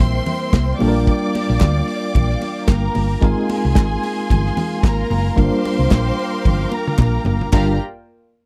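A 112 BPM disco groove in 4/4 with a light swing on the sixteenths drives this glamorous, danceable excerpt cut from a longer piece. The soul drum kit sits up front with a tight kick, a medium-tuned snare and dark cymbals, working across hi-hat, ride and toms, and a drum fill arrives at 6.4 seconds. Beside it, a round, punchy hollow-body short-scale bass, fingered and amped, holds the low end. High-tuned congas with a ringing tone and a hollow group handclap, entering at 0.5 seconds, add background percussion. A worn, slightly out-of-tune tine electric piano plays accompaniment through a combo amp with a fast tremolo, over chords moving from C7 to Bb6, Ab69 and Gm7. A lush, bowed violin section carries a smooth second line while a rich string section sustains chords, all captured in a dry, close 1970s-style studio sound with little reverb.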